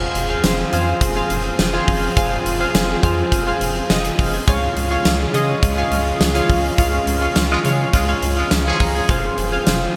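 A straight 4/4 beat at 104 BPM drives this uplifting, nostalgic slice of 1980s-style pop in Db major, taken from a longer piece. A huge arena drum kit comes in at 0.2 s, up front with a punchy kick, fat snare, hi-hat and tambourine, all soaked in gated reverb and a pumping room sound. Beneath it, a rubbery, bouncy square-wave bass with a dark, resonant filter pluck holds the low end. Glossy chorused retro synth keys sit forward in the mix, while a thick, detuned unison pad with slow attack and long release hovers in the background with its own chorus. The harmony moves from Fm to Db and back. A band accent arrives at 6.8 s, and a punchy, vibrato-tinged horn section adds stabs through digital delay from 7.5 s, all framed by a moderate hall reverb and bright 1980s-style digital production.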